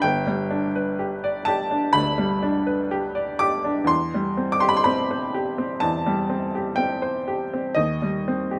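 A clear, woody upright piano sits up front with short sustain and light reverb in this tender, dreamy romantic nocturne excerpt at 62 BPM in 4/4, played with rubato across a range from G1 to D6, tuned to A4 = 439 Hz, and moving from G to C/E at 3.9 seconds and then to Cm/Eb at 7.8 seconds.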